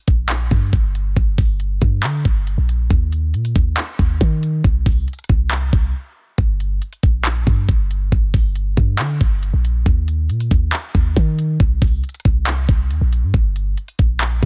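A deep, boomy 808-style bass with a sine-like core and a noise layer sits up front, striking with a fast attack and decaying into a mellow low end as it moves between G1 and Eb3. This eerie, dark trap cut in G minor runs at 138 BPM in 4/4 with a half-time feel, taken from a longer piece. An electronic trap drum kit shares the foreground, its knocking kick, crisp hi-hats and handclaps carrying a tape-warm, produced character. Both parts play from 0.1 seconds through a brief break at 5.9 seconds, carrying on as a new section opens at 6.4 seconds and continuing to the close at 14.5 seconds. The sound is dry and close, finished with a dense, heavily limited modern master.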